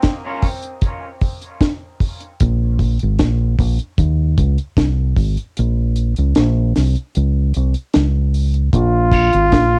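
A brilliant, vibrato-rich trombone bursts in up front at 8.7 seconds over a meditative, heavy dub reggae groove at 76 BPM, where a dry, dark drum kit with a high-tuned snare and tight kick is joined at 2.4 seconds by a round, punchy fingered bass before a twangy, slightly broken-up guitar with dub echo flickers briefly near the close of this cassette-recorded excerpt.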